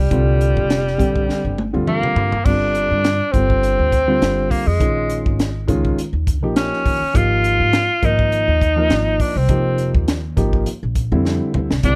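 An up-front tenor saxophone carries the melody in this nocturnal, slick slice of electric jazz fusion, its clear, vintage tone shaded with vibrato and scooped notes in a solo jazz style. Beneath it, an upright bass played pizzicato gives a woody, thumpy pulse from its gut strings, while a dark, mellow concert grand piano fills in the accompaniment with an intimate feel, its action noise audible. A crisp fusion drum kit sets a light swing in 4/4, pairing bright cymbals and a high-tuned snare with a tight kick and a gritty, saturated small-room sound that pumps. The kit marks the turns with fills from 1.3 to 2.5 seconds and again at 11.3 seconds, as the harmony moves from Gm7 through Bbm7 and Eb7 to a closing Bbadd9. Little reverb keeps the sound close and dry, and the passage is cut from a longer piece.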